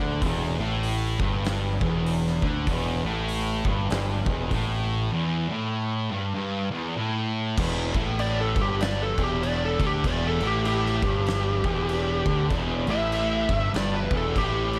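Stoner and doom metal at 98 BPM in E minor with a swung, heavy, brooding feel, this clip opens on a single Em riff from a bright, double-tracked fuzz guitar layered over two thick fuzz guitars sitting in the background, a punchy, overdriven bass growling up front, and an oversized low-tuned kit entering at 0.2 seconds with a fat snare, boomy kick and gritty crash and hi-hat in a pumping stone room, before a compressed fuzz lead guitar with tape echo takes a solo from 8.2 seconds in the upper register, all set in small room ambience.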